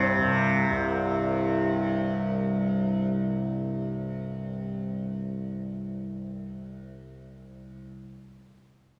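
A softly plucked tanpura drone opens this brief, meditative fragment of Indian classical music. Its buzzing, shimmering tone sits up front and spans from C2 to C3 in an introspective triple metre until 7.9 seconds. The sound carries the worn, warbly pitch drift of old cassette tape, along with small room ambience and a moderate stage reverb.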